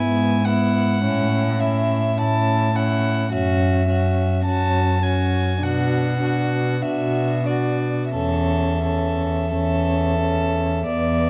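Rubato in a slow four, this lyrical romantic string quartet passage sets a floating, sul tasto first violin melody with an airy bow over a rich second violin line, a nasal, woody viola accompaniment with vibrato, and an up-front cello bass, the harmony moving from E/G# through A, F#5 and Bm to A/E across 11.3 seconds in a dark, warm production with light reverb.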